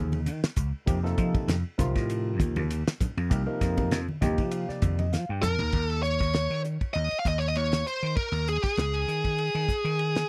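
Electric jazz fusion with a soaring, funky mood, this dry, close 1970s-style excerpt opens with a barky tine electric piano, lightly overdriven with lush chorus, over growly slap bass, a damped 70s drum kit with a fat snare and dark cymbals, and low-tuned congas in the background, until a fill on the piano and drums leads at 5.7 seconds into a section where a bluesy, distorted lead guitar takes the melody up front over the Eb7sus4 chord.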